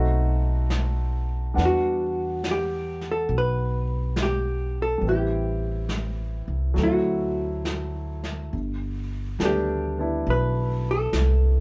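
Swung eighths at a slow 69 BPM in 4/4 carry this melancholic, smoky jazz ballad excerpt, where a dark, clean, compressed hollow-body electric guitar sits up front with the picked melody, a natural-sounding baby grand piano supplies accompaniment, a woody, thumpy pizzicato upright bass with gut strings anchors the low end, and a smooth brush drum kit with a rolled-off top joins at 0.7 seconds on brushed snare and hi-hat, all heard as a band playing live in one room with moderate studio reverb over chords moving from B7b9 through Em9, Am7 and D7 to Gadd9.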